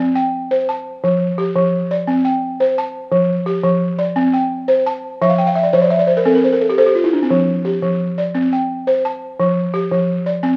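West African traditional music in a joyful 12/8 at 115 BPM in F major: a lone balafon, struck with soft rubber mallets, carries a woody, buzzing tone with a vintage, band-limited character, sitting up front in a moderate recital-hall reverb as it alternates between C5 and F harmonies, breaks into a fill from 5.2 to 7.3 seconds across a brief harmonic pause, passes through an Fsus2 and C5, and settles back onto F before this brief cut from a longer piece ends at 10.6 seconds.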